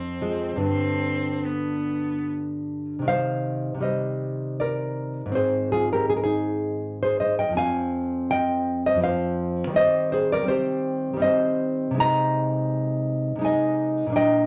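Elegiac and yearning, this fragment of a romantic duo in C minor sways in a rubato 3/4 at 72-84 BPM, with a bowed cello singing a rich, vibrato-laden melody between B3 and C4 only until 2.3 s, while a dark, fingerpicked nylon-string guitar carries the accompaniment up front through 14.5 s over chords moving from Fm and G through Cm, Abmaj7, Fm and Cm/Eb to Ab/C, all tuned to A4 = 441 Hz and set in a moderate studio reverb.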